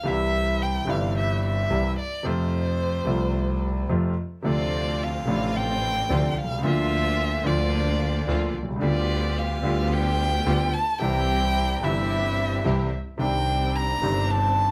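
A dramatic, tense tango played rubato opens with a violin solo, its rich bowed tone sitting up front with vibrato, portamento and a soft attack. A clear, intimate grand piano whose action noise is audible plays alongside from the start, and from 0.1 seconds a bowed double bass that sounds nasal and boxy joins in. At 4.4 seconds a studio string section adds smooth, even bowed stabs, and the harmony settles on a closing Cmadd9 chord in light reverb.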